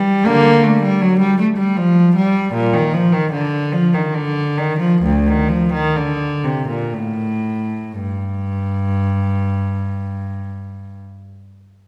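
A recital hall's lingering reverb surrounds this short piece, heard from further back in the room, while the cello itself sits close and up front. It is a classical, baroque-style suite movement for a single bowed cello in triple time, solemn and introspective in mood, lifted from a longer work. The instrument has a rich, reedy gut-string tone in period style, ranging from D2 up to Bb3. The rubato phrasing gives the line a free, searching feel, and the pace slows from 1.4 to 8.0 seconds before a new passage begins at 8.0 seconds and carries on to the close near 11 seconds.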